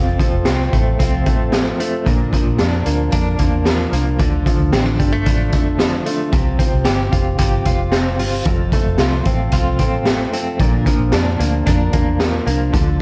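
Jangly indie pop at 112 BPM in F major, bright and youthful, cut from a longer piece and cycling through F, Bb, Dm and Csus4 under a light reverb and a dark, warm production. A fingerpicked steel-string acoustic guitar with fresh strings and audible finger squeak sits beside a clean, compressed electric guitar playing arpeggios through tremolo, while a foam-muted vintage bass adds round, punchy low end. The raw garage drum kit is up front, gritty and saturated, with a high-tuned snare, a boomy kick and hi-hat recorded in a small room with a rolled-off top.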